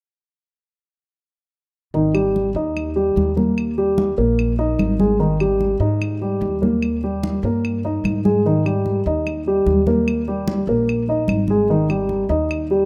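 Sunny and lively, this short cut from a longer Afro-Cuban jazz piece puts a mellow, intimate dark grand piano up front in accompaniment, its action noise audible, over thumpy pizzicato upright bass, bright thin-skinned congas and woody claves, with piano, bass and congas entering at 1.9 seconds and a fill at 8.2 seconds, all in a rough home-demo mix with light studio reverb.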